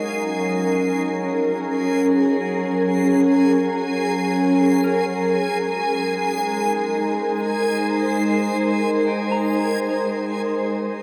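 Awash in a shimmering reverb with a long six-second tail, this luminous ambient excerpt in free time drifts in Ab major, where a glassy, ethereal FM pad with ensemble chorus and a filter sweep sits up front holding mellow sustained chords from Gbmaj7 to Abmaj7 at 5.2 seconds, a very quiet fingerpicked Celtic harp rings out soft arpeggios alongside, and a reversed, detuned granular texture fades in high above with bright, dreamy swells before the whole passage fades out from 9.3 seconds.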